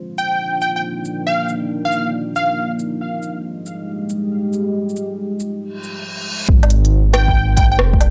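A future garage excerpt with a melancholic, nocturnal mood, set over a swung 4/4 groove. A deep, moody ambient pad holds sustained chords throughout, its slow-attack sawtooth tone warbling with chorus and built-in reverb and pumping against the sidechain, moving from Cm11 to Fm9. A punchy, catchy plucky lead carries the melody up front with analog chorus and delay, sounding from 0.2 to 2.7 seconds and returning briefly near the end. An organic electronic kit of cabasa, smooth hi-hat, rim click and woodblock runs underneath with a touch of overdrive. A reverse cymbal rises into the second section at 6.5 seconds, where an overdriven deep kick arrives alongside a rumbling, detuned saw bass with transformer saturation sitting up front on an Ab69 chord, all captured in a dry, gritty hardware sound with digital ambience.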